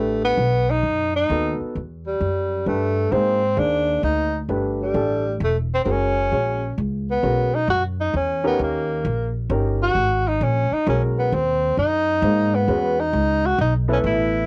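A swung waltz feel carries this relaxed small-group jazz fragment, where a mellow tenor saxophone with a soft attack and light vibrato sings the solo melody up front, a natural-toned baby grand piano comps beneath it, and a woody, thumpy pizzicato upright bass anchors the low end, all in a dry home cassette recording whose tape character colours the saxophone and piano as the harmony moves into a new section at 7.2 seconds.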